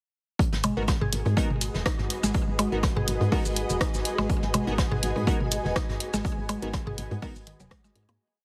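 A punchy, tape-warm four-on-the-floor kick and a looped brush kit with a dulled snare and pumping, filtered hats open this clinical, sparse minimal techno piece at 0.4 s, at 123 BPM in G# minor with a light 16th swing. Soon joining are a rolling staccato bass groove in a round, woody FM tone, a drum machine's closed hats, rim clicks and shaker, high and low toms with woodblock blips in cross rhythm, a 16-step mallet-like pluck sequence in the background with chorus and tape echo, and crisp, detuned wavetable chord stabs moved in parallel through dub echo over a G#m7 harmony. A cloudy, blurred granular pad with slowly shifting chords and a very quiet flickering grain texture holding a high note fill out the heavily compressed, radio-like sound before a fade-out from 5.6 s.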